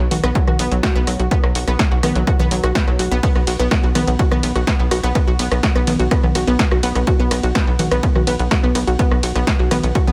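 A lush, detuned unison pluck leads this dramatic, cinematic melodic techno excerpt, spinning arpeggios between F#3 and F#4 with a sawtooth body, a noise layer and a short, fast-attack filter decay, set up front with delay and sidechain pumping. Beneath it, a tight sequencer bass drives on B1, its sawtooth and square-wave tone plucked by the filter and pumping with the sidechain. A punchy analog drum machine enters at 0.1 seconds with congas, hi-hat, ride cymbal, rim click and snare, re-recorded in a large room. An electronic kick drum joins at 0.4 seconds, sitting as the loudest part with its own analog punch from the same large-room treatment. The piece moves at 125 BPM in a straight 4/4 over a B5 chord, with little reverb overall, and is cut from a longer track.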